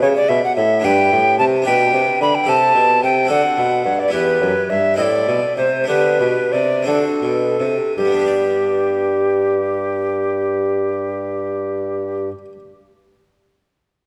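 A straight 6/8 pulse at 52-74 BPM in dotted quarters, slowing down from 3.3 to 8.0 seconds, carries this serene, dance-like baroque-style sonata movement in G major, cut from a longer piece, where an airy, wooden alto recorder sings the melody up front with vibrato, tongued notes, chiff and lifted highs, a mellow classical-style bassoon with light vibrato holds the bass line up front, and a full, plucked French-style harpsichord on two sets of strings fills out the continuo accompaniment, all set in a moderate concert hall reverb.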